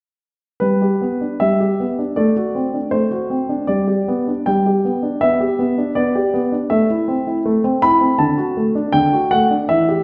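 The recording sits in a recital hall with a wet reverb that lingers for about 1.6 seconds, heard from further back in the room, with the highest frequencies topping out at 11.0 kHz for a softened, rounded sheen. Within that space, a warm baby grand piano plays alone from 0.6 to 10.0 seconds, its tone polished, present and up front. This is a classical-period sonatina in 2/4, cut from a longer piece, and the playing moves with an elegant, cheerful rubato. The piano spans from D3 to B5, keeping to a graceful middle register. The harmony travels through G, D7/A, G, G/B and Am before arriving on D at 8.2 seconds.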